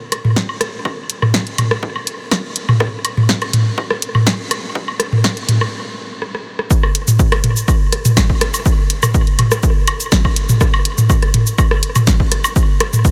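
A lightly reverberant mix opens this quirky, clinical techno excerpt, cut from a longer piece and moving at 123 BPM in a straight 4/4. An overdriven, punchy electronic kick sits up front with a high-passed edge. An analog drum machine supplies a punchy snare along with cabasa, hi-hat and rim click, all with a tape-warm tone. A layered garage drum kit, re-recorded in a small room and also placed up front, adds rim click, toms and woodblock through an analog delay. The opening builds, then halts at 5.7 seconds, with a drum fill at 6.2 seconds leading into the drop at 6.7 seconds, where the full groove runs to the end.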